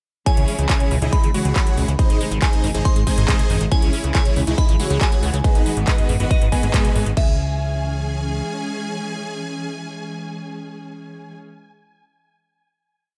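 Uplifting trance at 139 BPM in C# minor, bittersweet and soaring, that opens straight into a drop where a punchy four-on-the-floor electronic kick and a big-room kit of metallic hats, claps and crash drive a galloping sixteenth-note plucky analog bass and a squelchy, phased acid bass running a 16-step sequence in the background, with both basses pumping to the sidechain. Above them, huge detuned supersaw chords carry a repeating riff melody through phaser, tape echo and sidechain pumping, while a crystalline FM synth bell with chorus, phaser and echo plays a second riff and a lush bowed string section with vibrato holds sustained chords. After a band accent at 6.7 seconds the drums drop away, and from 7.2 seconds the supersaws, bell and strings ring out on a final C# minor chord in a dry mix.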